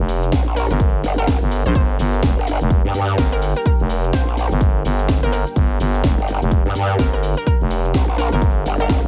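Bass house with an aggressive, gritty mood and a swung sixteenth-note groove, built on two overdriven basses that pump against the punchy, layered electronic kick: a thick FM bass growling low and a detuned, saturated growl bass that wobbles through a formant filter. The house drum kit adds cracking snare, metallic hi-hats and shaker in a studio reverb, while a hollow, bouncy square-wave pluck enters at 0.6 seconds with chorus, digital delay and a cassette-tape tint. Beneath it all, a mellow ambient pad sits very quiet and a moody, wave-folded analog pad holds sustained chords that are barely audible, all in a short cut from a longer track.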